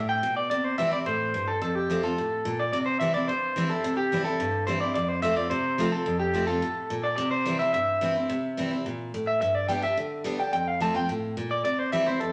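Rock at a brisk 215 BPM in C mixolydian, retro and upbeat, with a twangy, slightly broken-up electric guitar through a small old amp carrying the melody in spring reverb, up front beside a bright, full-bodied picked steel-string dreadnought acoustic with fresh strings and audible finger squeak picking through C, F and G chords, the pair set in a moderate large-studio ambience across this 12.3-second cut from a longer piece.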